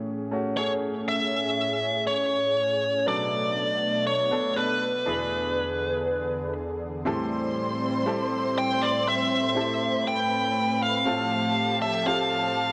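A moderate spring reverb gives this short cut from a longer pop ballad a gentle, ringing space, and the mood is melancholic and heartbroken at a slow, straight pace. A clear concert grand piano with deep bass and short sustain plays the accompaniment throughout, while a lush unison pad, thick and nasal with a detuned sawtooth edge and chorus, holds sustained chords underneath. From 0.6 seconds a bluesy overdriven lead guitar carries the melody up front, its picked, distorted tone the most prominent voice. The harmony moves from Amaj7 through Bm7 and E7 before shifting to a darker Am7 at 7.1 seconds, where a warm studio violin section enters with a focused, bowed second line carrying vibrato and a smooth top. The passage closes on F/A, leaving the heartache unresolved.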